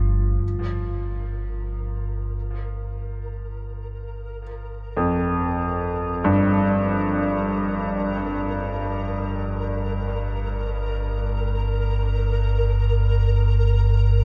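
Heard through a soaked, cavernous reverb with a long 8.0-second decay and the hazy character of cassette tape, this dark ambient drone is a brief passage cut from a longer piece, ominous in mood. A deep, rumbling drone sits up front in the low register, its detuned, warbling tone given a vintage cast and swept by a filter as it sustains through the whole passage. Over it, a brilliant baby grand piano plays arpeggios in its lower-middle range, its natural, up-front sound trailed by tape echo. From 0.9 seconds a faint, flickering granular texture slowly fades in on a single high note, grainy and detuned, adding a restless shimmer above the gloom.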